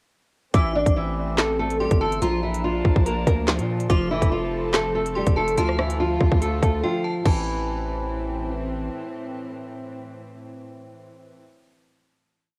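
Hip hop drill in half-time with a dark, cold mood: a fingerpicked nylon-string guitar loops a classical melody doubled in octaves through low-pass filtering, cassette tape and tape echo, while a metallic, inharmonic FM bell adds a sparse chorused counter-melody, a distorted 808-style bass with long sub-bass notes and pitch slides follows the hard-clipped kick, crisp skipping hi-hats, woody snare layered with clap, rim clicks and crash cymbal drive the up-front electronic drum kit, and a dark, sul tasto chamber string section sustains bowed chords over Am, Bb, F and Dm through a brief break at 6.8 seconds before settling on a final A minor chord, which it carries alone once the other parts fade, until 11.4 seconds, all with light reverb and the character of a home cassette recording.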